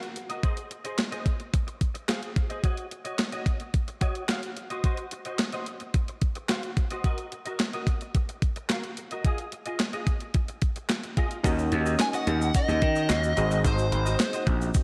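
Funky and late-night, this early-eighties boogie funk fragment opens with a twangy, compressed clean electric guitar riff over a thumpy, overdriven 8-bit drum machine, and at 11.4 s a gritty, growly slap bass and a detuned sawtooth polysynth comp arrive, followed by a grainy tube shaker in the background and, at 12.0 s, a dark overdriven lead guitar melody, all set in a big arena-style reverb.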